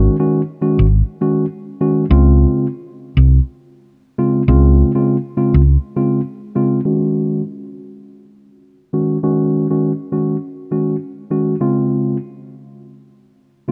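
A mellow tine electric piano and a round, punchy hollow-body electric bass open this breezy, romantic afrobeats excerpt together, moving at 101 BPM in 4/4 with a gentle sixteenth-note swing in Ab mixolydian. The electric piano sits up front with a clean, direct tone softened by a low-pass filter, voicing Ab7sus4 and Dbmaj7 chords in the middle register. The short-scale bass, played with the fingers, has a dark, amped character and holds the low end until it drops out at 5.8 s. From 6.9 s the second section leaves the electric piano alone, now shaped by a filter sweep as the harmony returns to Ab7sus4 before settling on Dbmaj7 at 11.6 s. A light reverb gives the recording a soft sense of space, and the clip ends at 13.7 s, cut from a longer piece.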